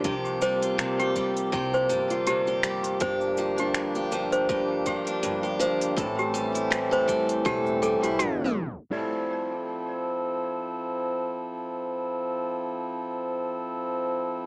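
A bright, clanky toy piano with tape echo rides over a reedy, breathing harmonium and a parlour steel-string guitar picking arpeggios through its own tape echo in this autumnal, intimate folktronica excerpt at 81 BPM, alongside a woody pizzicato upright bass in the background, a soft electronic kick, and a low-pass-filtered organic electronic kit of cabasa, finger snaps and crisp hi-hat. The mix is set in a moderate plate reverb with a small-speaker tint until a tape stop at 8.2 seconds gives way to the harmonium and kit carrying on to 14.5 seconds, the guitar lingering briefly until 9.5 seconds.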